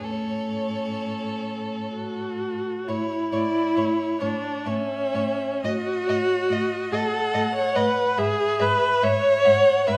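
The viola stands out most, sitting close and up front with a soft attack, expressive portamento and vibrato as it carries the accompaniment. This slow, serene romantic movement for string quartet moves in triple time with flexible rubato and is cut from a longer piece. Above it, the first violin carries the melody with a focused, smooth tone, while the second violin traces an even, silky line beneath. Both violins are bowed with vibrato and sit further back in the blend. The cello holds a low bass, close and expressive, with its own vibrato and portamento, and the four players sound together in the wet reverb of a recital hall as the harmony moves from A to B7/A at 5.6 seconds and settles on E/G# at 8.2 seconds.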